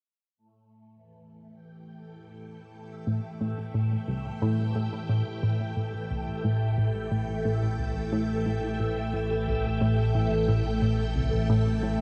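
A straight 4/4 pulse at 89 BPM drives this expansive, cosmic stretch of ambient, sequencer-driven space music cut from a longer piece: a lush, vintage string machine fades in from 0.4 s with sustained chords through phaser and ensemble chorus, sitting up front, before a tight, nasal sequenced synth riff enters low at 3.1 s, coloured by chorus and tape echo, and a fat, detuned analog bass arrives at 5.8 s on a sustained A1 as the harmony moves from A7(no3) to Am7, all bathed in a huge, dark reverb.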